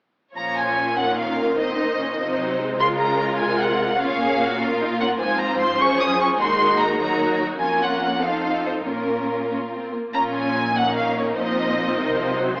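A quick, restless and stormy classical-period movement for string orchestra in Bb minor at 99 BPM in a rubato 6/8, where an expressive, lush violin section carries the melody over a smooth, up-front second violin line, close violas adding portamento to the accompaniment and a rich, focused cello bass, before a soft-attacked double bass section joins in the background at 10.1 seconds, all set in a wet scoring-stage reverb with an AM radio sound.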